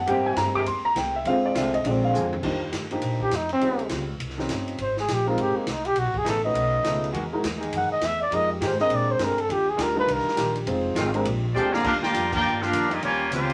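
A dark, close-miked trumpet takes the solo from 2.4 s, its vibrato and scooped notes riding over a fast swinging big band at 204 BPM in Eb major, after a short opening from a warm, up-front grand piano with short sustain. Underneath, a woody, growly pizzicato upright bass, a very quiet clean hollow-body electric guitar, a bright trombone section holding sustained chords and an acoustic drum kit with a punchy kick keep the brassy feel moving, with drum fills marking the turns. Near the close of this cut from a longer piece, a clear, vintage trumpet section takes over the melody from 11.5 s above a tight trombone section second line, capped by a band accent at 12.3 s.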